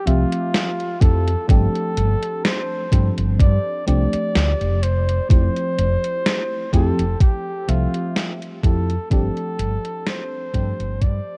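A mellow flugelhorn with light vibrato and scooped notes opens this faded, woozy vaporwave fragment at 63 BPM in F major, joined at once by a dark FM electric piano under phaser and subtle chorus, a round, woody fretless bass sitting up front, and a tape-warm 80s drum machine whose hi-hat and snare carry gated reverb, while a thumpy electronic kick arrives at 1.0 s and the cassette-toned, gently swung groove drifts between Fmaj9 and G9sus4 before fading out from 6.6 s.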